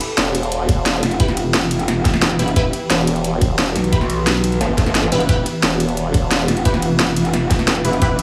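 A swarming, tense drone of sustained chords opens this short cut from a dark, aggressive technical drum and bass track, arriving alongside an overdriven, up-front electronic drum kit of cracking snare, hi-hats and ride cymbal. A formant-filtered wobble bass, built from detuned pulse and sine tones with chorus, enters at 0.2 seconds. It is soon joined by a knocking, overdriven electronic kick and a second, metallic wobble bass whose saturated FM growl carries chorus, overdrive and sidechain pumping. From 1.2 seconds, bold, punchy orchestra-hit-like synth stabs cut through with a bright, detuned sawtooth edge, a noise layer, filter sweeps, reverb and digital delay. Throughout, the mellow, granular drone keeps its slow-attack chords pumping under built-in reverb over a single Em chord, while both drum layers carry a small-room, re-recorded character inside a lightly reverberant studio space.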